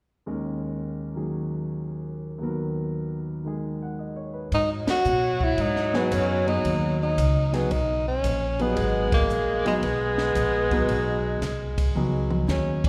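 A swung 4/4 groove sets a cool small-group jazz feel in this extract, opening with a warm, natural grand piano playing alone on suspended and minor-seventh chords. At 4.5 seconds the band joins: a present tenor saxophone carries the melody with vibrato and subtone, a clear vintage-toned alto adds a second line with scooped notes and light vibrato, woody pizzicato upright bass sits up front, and a compact, dark cocktail kit with a punchy kick and high-tuned snare keeps the swing. Band accents punctuate the passage, a drum fill closes it from 12.0 seconds, and a wet, hall-like reverb surrounds the ensemble.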